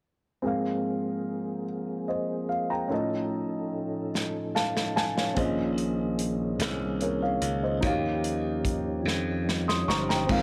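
Reverent and uplifting, this slow gospel fragment in 6/8 opens with a dark, intimate grand piano, its worn action noise audible, over soft, flute-like tonewheel organ chords turning through a slow rotary speaker and chorus vibrato, before an airy, polished acoustic drum kit with a punchy kick arrives at 4.2 seconds on a fill as the piano adds its own, and a bright, growly slap bass joins at 5.4 seconds, all framed by a small room ambience.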